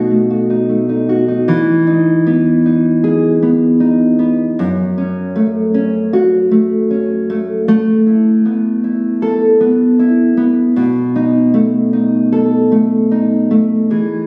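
Heartfelt and tender, this slow pop piece at 78 BPM in E major sets a lone nylon-string guitar, dark and full-bodied with a deep classical tone, thumb-plucked with audible finger squeak and up front in a phone recording awash in wet reverb, moving from a B7 opening through Emaj7, F#m and Asus2 before returning to B7 near 10.8 seconds in this short cut from a longer piece.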